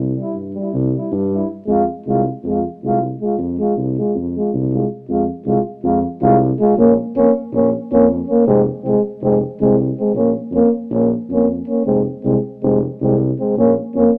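A close-miked, up-front euphonium in a dark classical style plays accompaniment in this bittersweet, virtuosic Balkan brass band excerpt, set in F harmonic minor at 318 BPM in eighths, counted in 9/8 with a straight feel. A punchy tuba holds the bass from the very start, while a second euphonium, distant and roomy, sits behind both from 0.2 seconds. The harmony moves from C to F minor and later alternates between B-flat minor and F minor in a moderate club reverb.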